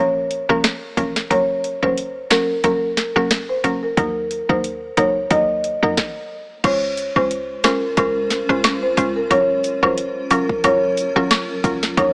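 A swung 90 BPM dancehall groove in 4/4 drives this bouncy, sultry excerpt, tuned to A4 = 435 Hz, built on an up-front electronic afro-pop kit with a deep kick, sharp snare and metallic hats over a punchy, tight 808-style bass sitting in the background. A mellow marimba played with soft mallets carries the melody while a woody, bright synth pluck with chorus adds accompaniment. After a brief stop from 6.0 seconds, acoustic woodblock and cabasa join at 6.6 seconds and a cloudy, evolving granular pad with built-in reverb and sidechain pumping enters at 7.4 seconds, all framed by light reverb and a small-speaker sound.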